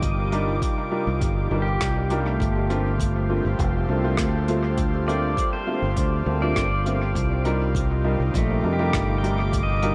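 Ambient dub in a hazy, deep mood, this short cut drifts over Cm11 and Gm11 chords as an airy, breathy pad holds sustained chords with chorus, a twangy pedal steel guitar picks arpeggios through gritty 12-bit sampler texture and dub echo, an up-front fingered electric bass anchors the low end, an overdriven electronic kick and a soft brush kit with hi-hat and rim click keep time, and a dark, woody upright piano enters at 0.3 s with echoing stabs, all set in a small, lightly reverberant room.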